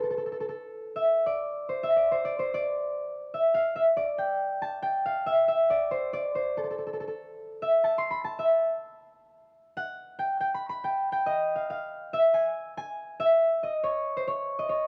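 A straight 4/4 calypso pulse at 140 BPM gives this bouncy, carefree excerpt its lilt. A lone concert harp carries it from start to finish, thumb-plucked and ringing, sitting up front and ranging from A4 to C6, with the music moving into a new section at 12.1 seconds. The sound is dry and close, like a 1970s studio session, with just a small room's ambience around the strings.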